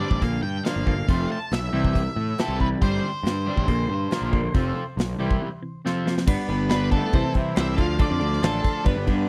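Up-front, boomy-kicked rock drums drive this carefree, jangly indie rock excerpt at 139 BPM in G mixolydian, with a round, punchy fuzz bass, a dark octave-fuzz lead melody, a bright chorused fuzz guitar riff and an overdriven semi-hollow guitar in a dry, close 1970s-style sound, pausing for a break at 5.4 seconds and a drum fill at 5.8 seconds before a very quiet lush unison pad joins at 6.3 seconds and a gritty tremolo electric piano follows at 6.7 seconds.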